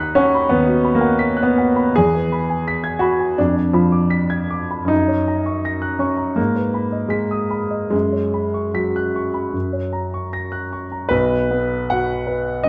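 A romantic classical character piece for solo piano in B major, warm and passionate in a rubato 4/4 at 73-89 BPM, this fragment of a longer work places a warm, present grand piano up front, its long sustain ringing across a span from B1 to B6 through chords moving from B over D# to E, Fdim7, F#, G#m and F#sus4 before settling on B5 at 11.1 seconds, all set in a moderate large-studio reverb with a dark production.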